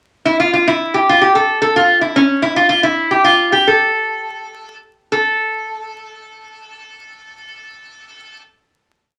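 Klezmer in 2/4 with a straight feel, this complete short piece sounds festive yet bittersweet, moving between 82 and 110 BPM. A solo lap resonator guitar carries everything, entering at 0.3 s with a brief pickup before stating a modal melody full of ornaments. Played with fingerpicks and slide, the acoustic instrument has a bright, metallic, nasal bite and sits up front in the mix. The tempo slows from 2.7 s to 5.1 s, and the piece then rests on a long final note that holds until 8.0 s. A wet studio ambience and a layer of vinyl crackle surround the recording.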